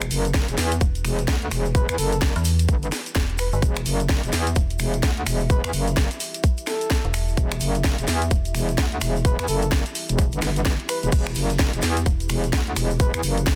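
Bass house at 128 BPM in E minor with a bouncy, gritty swing, where an aggressive, saturated metallic wobble bass and a tight, up-front electronic kick entering at 0.3 s drive beneath a garage drum kit with cracking snare, hi-hat, finger snaps and crash, a grainy tube shaker, a dark, decaying metallic FM bass that plays from 0.8 to 8.5 s with a brief return at 12.1 s, a moody, nasal analog pad sustaining an Em chord in the background with sidechain pumping, and a breathy, flute-like synth lead with tremolo, vibrato and tape echo arriving at 1.7 s, all in a dry, dense, heavily limited mix cut from a longer piece.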